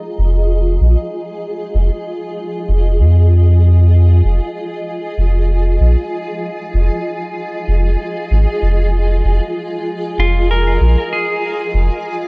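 A dry, close-sounding cut from a longer ambient dub piece in F minor, hazy and meditative, moving at 96 BPM with a light 16th-note swing over a single Fm7 chord. A cloudy, slowly evolving granular pad, detuned and blurred with its own reverb, holds sustained chords while a deep, round sub bass sits up front from 0.2 seconds. Near the close, at 10.2 seconds, a clean electric lap steel enters briefly with a warm, compressed slide melody, shaped by volume swells and trailed by dub echo.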